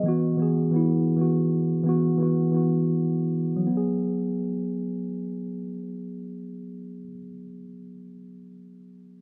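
Hip hop at 133 BPM in 4/4 with a half-time feel, this brooding, menacing fragment of a longer piece is tuned to A4 = 436 Hz. The only part is a mellow tine electric piano, playing accompaniment from start to finish within the range E3 to G#4. Its clean tone sits up front, as if heard through built-in speakers, and is shaped by a low-pass filter. A filter sweep on the piano runs through the opening section, which rests on an Esus2 chord. At 3.7 seconds a second section begins and the harmony moves to G#m7. The recording is dry, with little reverb.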